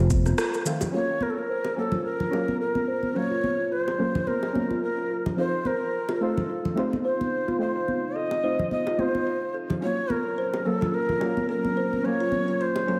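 Cut from a longer organic downtempo piece, this earthy, hypnotic passage opens with a deep, detuned chord stab pumping under chorus and cassette-tape grit beside a woody, ringing kalimba arpeggio that is low-pass filtered and swept, while an overdriven electronic shaker and rim click flash by before 0.9 seconds, soft-handed congas and bongos keep a swung pulse, an airy cedar flute with vibrato carries the melody up front from 0.9 seconds, and a warbling, nostalgic tape-like pad with its own filter sweep settles into the background at 1.8 seconds, the dreamy mix soaked in plate reverb over F7 and Gb chords.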